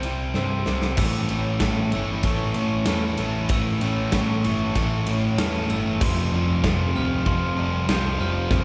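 Post-rock build-up, melancholic and brooding, cut from a longer piece, where a punchy, up-front big rock drum kit plays a fill from 0.4 to 1.0 seconds beneath a round, dark hollow-body short-scale bass, a bright overdriven guitar riff, and, in the background, the compressed, slightly broken-up arpeggios of an electric guitar through a small old amp with spring reverb alongside sparkling, bell-like glockenspiel arpeggios struck with brass mallets, before a sludgy distorted guitar riff joins at 1.0 seconds as the chords move from C to A to Fadd9, all bathed in the long wet reverb of a church.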